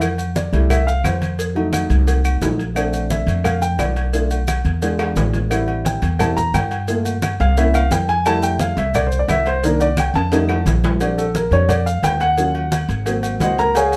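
A brisk, straight 4/4 groove at 175 BPM drives this lively, sunny slice of Afro-Cuban jazz in F major, taken from a longer piece. The percussion carries it from the first beat: damped, low-tuned congas with hard hands sit in the background alongside tight, high-tuned cowbell and bongos with a vintage, band-limited tone, while ringing, saturated agogo bells and timbales, grainy maracas and woody claves fill out the pattern, the claves dropping out at 10.7 seconds. Drum fills mark the phrase turns at 5.0 and 10.1 seconds. Up front, a thumpy pizzicato upright bass with steel strings and a dark character anchors the low end between Ab1 and G2. An intimate upright piano enters at 0.4 seconds and takes the solo through the whole passage, its audible action noise adding a close, handmade quality as it moves through rich changes like Fmaj7, F7b9, Bbmaj9 and an Ebm9 to Ab7 turn near the end. Moderate studio reverb gives the ensemble a modest sense of space, though lossy compression artefacts slightly cloud the sound.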